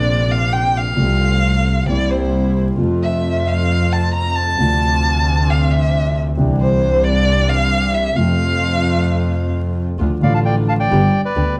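Tango at 133 BPM in F major, played with a passionate, dramatic rubato feel by a band live in one room, with vinyl crackle and a wet studio reverb around it. A close, expressive violin carries a bowed solo with vibrato and portamento for the first 10.0 seconds. Beneath it sit a dark, mellow grand piano with deep bass and long sustain, a biting, earthy double bass bowed up front, and veiled con sordino string stabs in the background. At 10.2 seconds a reedy, vintage bandoneon takes the melody as the harmony moves from Dm to G.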